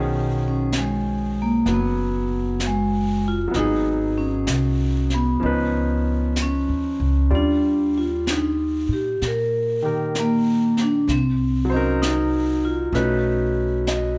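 Lightly reverberant and gently rolled off in the highs, this melancholic, wistful jazz ballad fragment at 64 BPM swings softly in 4/4: a mellow, ringing vibraphone with soft mallets and motor off carries the melody up front from 0.5 s, over a woody pizzicato upright bass, a clear, smooth vintage grand piano with deep bass in accompaniment, and distant, roomy brushes on a high-tuned snare and hi-hat entering at 0.7 s, as the harmony moves from B69 through Ebmaj9 to B9.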